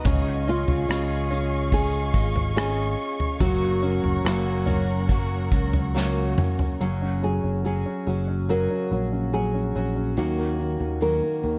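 This pop ballad excerpt feels hopeful and emotional, moving at an unhurried, straight pace in four. An intimate concert grand piano with audible action noise and long sustain plays the accompaniment, while a full-bodied steel-string acoustic guitar picks arpeggios with finger squeak and a touch of tape echo, and a growly fretless electric bass with subtle chorus sits up front. A woody, thumb-plucked nylon-string guitar with old strings carries the melody from 0.5 seconds, beneath a dark studio string section whose bowed sustained chords show vibrato and portamento. An acoustic drum kit played with bundle sticks, featuring a punchy kick, rim clicks, a medium-tuned snare and toms, closes the first section with a fill at 6.0 seconds. At 6.8 seconds the strings and drums drop away, leaving the piano, the two guitars and the bass in the second section under light reverb.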